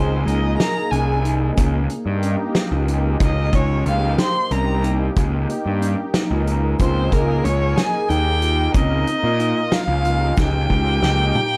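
A bowed violin with vibrato carries the melody from the first moment of this bright, intricate progressive instrumental in 11/8, sitting up front with a focused, smooth top and plate reverb. Alongside it, a mellow flugelhorn plays a classical-style second line in the background, trailed by tape echo. A lush, thick unison pad with a slow attack and a warbling, detuned vintage sawtooth character sustains beneath, while a clean tine electric piano, heard as if through its built-in speakers, adds arpeggios. A round, overdriven fuzz bass is picked and placed up front. A loose, roomy acoustic drum kit with a fat snare and tight kick enters at 0.3 seconds, and a grainy tube shaker follows very quietly at 0.6 seconds. The harmony moves through Dbsus2, Eb/Db and Fmadd9/Db before landing on Eb under a drum fill from 10.4 seconds, closing this excerpt of a longer piece.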